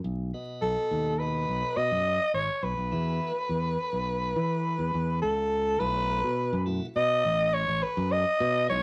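Driving and intricate, this progressive instrumental fragment moves at 104 BPM in 5/4 in B mixolydian, with a bright, punchy fingered electric bass up front from the start, a piping tonewheel organ with key click through a stopped rotary speaker entering at 0.3 s, and a growling soprano saxophone soloing from 0.6 s with a raspy, breathy jazz tone and scooped notes, over B and Esus2 chords that give way to B7sus4 at 5.8 s amid moderate studio reverb and vinyl crackle.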